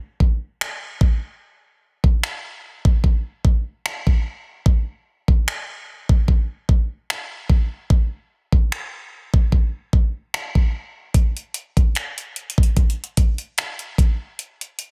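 A produced, electronic R&B drum kit carries this moody, late-night excerpt on its own, entering at 0.2 s with finger snaps, metallic hi-hats and a knocking kick over lightly swung sixteenths in 4/4. Re-recorded in a small room and placed up front, the kit has soft clipping on the snare, and the clip opens as a break running through 11.1 s. The sound is dry, with a dense, heavily limited modern master.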